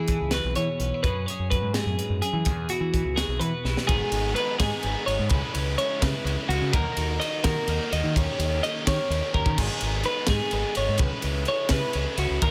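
Math rock with a midwest emo heart, this bright, playful cut from a longer piece moves at 84 BPM in a straight 6/8, centred on E major. Two twelve-string electric guitars open together: one twangy and up front, spinning arpeggios through a digital delay for the whole passage, the other a mellower, compressed accompaniment washed in lush chorus that drops out at 5.3 seconds. A growling fingered bass with overdrive sits prominently underneath, while a crisp fusion kit, recorded in a small, pumping room with a high-tuned snare and tight kick, adds saturated, gritty punch up front, marking turns with fills at 3.7 and 9.3 seconds. At 3.9 seconds a double-tracked overdriven electric guitar enters with a riff, and the harmony shifts from E6 and F#sus2 into a darker run of G#m7, C#m7, D#m and D#7. Light reverb ties the parts together.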